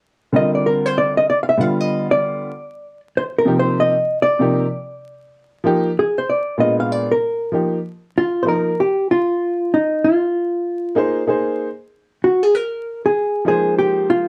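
A woody, slightly detuned, vintage upright piano opens this cool, smooth hip hop clip in Eb major at 96 BPM with a swung 16th-note feel, joined almost at once by a clean, dark hollow-body jazz guitar that takes the melody and a solo through the first 7.5 seconds, both sitting up front in a wet, dark, warm mix dusted with vinyl crackle over rich chords like Ebmaj13/D, Cm11 and Bb7b9.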